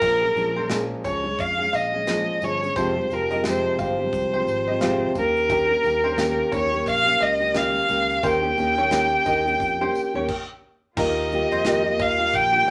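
A rich, bowed violin with vibrato sings the tender, wistful melody up front in this acoustic pop excerpt. Beneath it sit fingerpicked nylon-string guitar with audible finger squeak, twangy banjo arpeggios in the background, a growly fretless electric bass, a polished drum kit with punchy kick, snare, shaker and crash, and a very quiet, jingly tambourine. After a stop from 10.3 to 11.0 seconds, a dark, very quiet string section enters at 11.0 seconds with soft-attack, sul tasto sustained chords, all bathed in a large, wet studio reverb, while swung sixteenths lend a gentle lilt.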